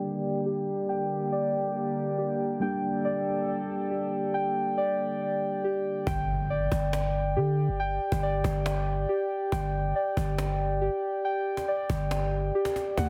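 Muted, felt-like synth keys carry dark, warbling arpeggios through this melancholic yet hard-hitting half-time trap excerpt at 139 BPM in G minor, opening over a mellow, clean tine electric piano and a nostalgic, lo-fi tape-like pad under a filter sweep until 6.1 seconds, when a growling, buzzy 808-style bass, a snappy acoustic cajon and a very quiet electronic impact arrive in a dense, heavily limited mix with little reverb.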